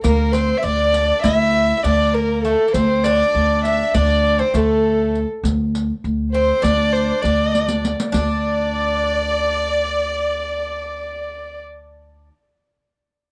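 Hypnotic and longing, this Turkish makam ensemble piece moves at 200 BPM in eighths through a straight 9/8, cut from a longer work. A dark, intimate solo violin carries the melody up front, bowed sul tasto with light vibrato and a soft attack. Beneath it a metallic, picked bouzouki and a rich chamber violin section in the background add second lines, while a woody, thumpy pizzicato upright bass holds a steady D. A vintage riq with bright jingles plays until 8.4 seconds, shortly after a drum fill from 7.5 to 8.1 seconds, all captured in a dry, close 1970s-style studio with small room ambience.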